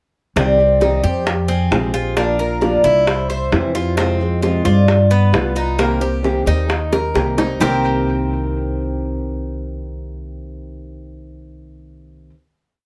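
Bongos keep tight, high-tuned steady eighths, giving this short, danceable piece of Cuban son and guajira a straight four-beat drive. An upright bass sits up front with a woody, dark pizzicato tumbao that anticipates the chords, while a fingerpicked old ladder-braced acoustic guitar adds a boxy strummed accompaniment with muted slaps. One Cuban tres carries a motif-based melody of song-like phrases on metallic doubled strings, touched with tape echo. A second, brighter tres, also echoed, plays an arpeggiated guajeo beneath it. A drum fill enters at 6.9 seconds, the melody tres stops at 7.1 seconds, and from 7.6 seconds the piece closes on a final chord held by the guitar, bass and guajeo. The band-limited, vintage-sounding bongos and a moderate studio room give the recording a warm character.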